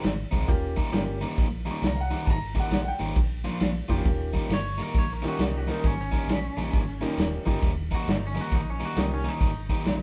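A swung shuffle in 4/4 at 134 BPM drives this gritty, swaggering electric blues in E-flat mixolydian, heard as a short cut from a longer piece by a band playing live in one room with light reverb. The natural country drum kit sits up front with a punchy kick, a medium-tuned snare and dark ride cymbal, while a vintage fingered electric bass, foam-muted, round and amped, holds down the low end from the start. A crunchy overdriven guitar plays the riff, picked with a warm edge, and a bright upright piano enters at 0.5 seconds with brilliant, woody accompaniment through the chords of Eb7 and Bb. At 4.1 seconds, as the section repeats on Eb7, a second electric guitar takes a clean solo through a small old amp, twangy and slightly broken-up, wrapped in spring reverb. The drums sit loudest in the balance, with the solo guitar quietest in the mix.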